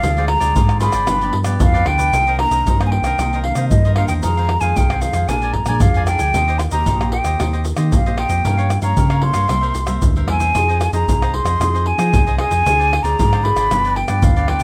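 Bittersweet and nostalgic, this short cut from a longer samba and choro piece moves at 114 BPM in a straight 4/4, set in C minor. A breathy, mellow silver concert flute carries the melody up front, its close-miked, hollow metal tone shaded with vibrato and tongued notes. Beneath it, a crisp, picked cavaquinho and a thumb-plucked nylon-string guitar with fresh strings and a classical character fill in the harmony. A deep, full sub bass with an octave gives sustained, sine-like notes with a fast attack. The percussion of tube shaker, deep surdo, pandeiro and tamborim sits close, dry and up front, struck with hard hands. After a brief opening turn on Dm7b5 and G7, the main passage arrives at 2.1 seconds on Cm9 and moves through Fm7, Bb7, Eb6, Gm7b5, C7 and Fm7 before circling back to Dm7b5 and G7, all within light reverb.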